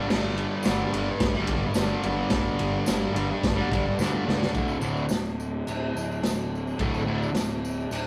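A rough rehearsal-room recording with tube saturation and a tight, wet booth ambience frames this short, gritty garage rock excerpt at 107 BPM in a straight 4/4, moving from a G5 passage to a D5 passage at 4.5 seconds after a drum fill. A bright, double-tracked fuzz guitar sits up front with a distorted, compressed riff, over a punchy overdriven fuzz bass picked low. The raw garage kit, boomy in the kick with dark cymbals and a rolled-off top, pumps in its small room, while a jingly tambourine sits in the background from 0.6 seconds.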